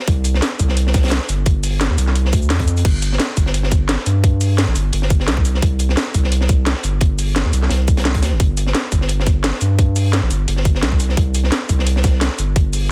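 A lightly swung 4/4 groove drives this soulful, rolling liquid drum and bass excerpt, anchored by a tight, up-front electronic kick and a produced kit of cracking snare, metallic hats, shaker and crash, both re-recorded in a small room. Beneath them sits a quieter, dark and gritty breakbeat kit with a high-tuned snare and hi-hat, high-pass filtered and rolled off at the top. A deep, thick, saturated sine sub bass with a fast attack sustains up front from 0.1 to 12.9 seconds, all within a dry, dense, heavily limited mix.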